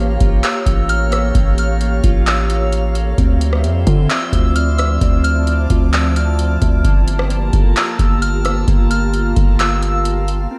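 This ethereal, spacious cloud-rap excerpt opens on a dark, glassy FM pad holding slow-attack chords with ensemble chorus and reverb, its sound pumping with sidechain. Mellow digital arpeggios sit in the background with chorus and delay. Beneath them, a deep, sine-toned 808-style bass sustains long, decaying notes up front, while a bright texture of drifting overtones hovers high with chorus and reverb. At 0.2 seconds a booming analog drum machine arrives in a half-time 4/4 feel at 131 BPM, its deep kick, metallic hats, handclaps and rim clicks carrying the sound of a large room. From 0.4 seconds a soft, pure synth bell sings a gentle high melody treated with chorus, phaser and delay, as the harmony moves from A7b9b13 to Dm9 and then Gm9 within light digital ambience.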